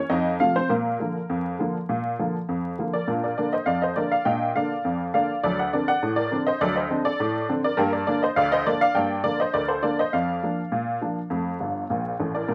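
A straight two-beat pulse drives this lively, cheerful ragtime fragment, cut from a longer piece and lasting about 12.5 seconds. A lone honky-tonk upright piano carries everything, spanning from deep bass notes up into its upper register, and its detuned, jangly tone with short sustain sits bright and up front. The harmony moves from F7 into Bb, then through D7 and G minor before settling back toward F, and the music shifts into a new section at 3.1 seconds. A quick honky-tonk fill arrives at 11.6 seconds to round off the passage. The sound is steeped in age: a worn, warbling old-tape character with a cassette-tape quality, vinyl crackle and drifting pitch, set in a modest small-room ambience.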